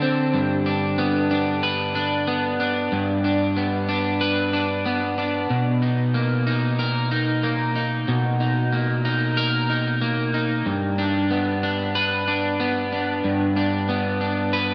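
At a straight 93 BPM in 4/4, this dream pop excerpt drifts along with a blissful, floating mood over its roughly 14.7 seconds, cut from a longer piece. A lone electric guitar carries the whole passage, sitting up front with a fingered, twangy tone that is just at the edge of break-up. Its range spans G2 to B4, and an analog chorus and diffuse ambient delay give the notes a shimmering halo. The harmony moves from G to Bmaj7 at 5.5 seconds and returns to G at 10.7 seconds. A lush hall reverb with a long 2.5-second tail soaks the mix, leaving the sound hazy and dreamlike.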